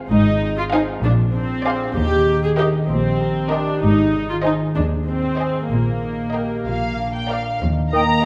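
In a slow, straight 6/8 at 64 BPM counted in dotted quarters, this mischievous, quirky cinematic cue in Eb major opens with a dark, woody violin section carrying the melody over a floating second violin line and an up-front viola section, all played sul tasto, joined by a ringing fingerpicked concert harp. Cellos and double basses sit close and intimate underneath while the harmony moves from Fm/Ab through Bb9 to Eb, Ab and back to Bb. At 7.9 s an airy flute group, a smooth solo oboe, a mellow bassoon and a distant French horn section enter briefly on the closing Eb5, all bathed in a wet scoring-stage reverb.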